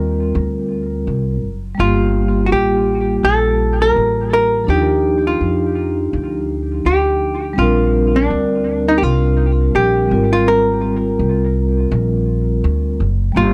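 Jazz-hop with a smooth, cool mood and a swung 4/4 feel, moving through lush chords from Abmaj13 to Gm9, Ebmaj9 and Bb69, where a clean, up-front hollow-body archtop guitar carries the picked melody through plate reverb and analog delay, a mellow soft-mallet vibraphone with slow motor vibrato rings out the accompaniment in plate reverb, and a woody, thumpy pizzicato upright bass on gut strings anchors the low end, all three playing throughout this cut from a longer piece in a moderate studio room.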